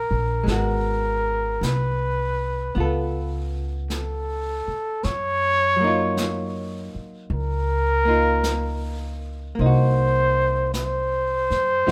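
A light reverb gives this short cut from a longer jazz ballad a smoky air, with a breathy trumpet and a thumpy upright bass set up front. The tempo is a slow 52 BPM in 4/4 with a swing on the eighth notes, and the mood is wistful. The trumpet carries the melody as a solo voice, dark and present, with light vibrato and scooped notes in a jazz style. A clean, picked hollow-body electric guitar with a shadowy tone supplies the accompaniment, while the pizzicato upright bass on gut strings sounds woody and deep. A brushed drum kit with a medium-tuned snare and hi-hat enters at 0.5 seconds, sitting softly behind the others with a natural small-room character. The harmony moves through Abm9, Dbaug7, Gb6 and Cm7b5 over roughly 12 seconds.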